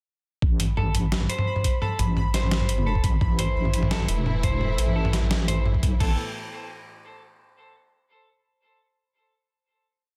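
A sparse half-time beat from a gritty, thumpy electronic kick and a compressed sampler-style kit of closed hi-hat, medium-tuned snare, low tom and crash drives this tense, cinematic half-time drum and bass piece, where an up-front, dark wobble bass with chorus carries modulated phrases of changing wobble speed, a clean electric guitar with delay repeats a six-step arpeggio loop that drifts against the bar, a bright pulsing gated texture holds a high note in the background, and a smooth chamber string section with vibrato enters at 3.2 seconds with sidechain-pumped sustained chords before the piece settles on a final chord at 6.0 seconds.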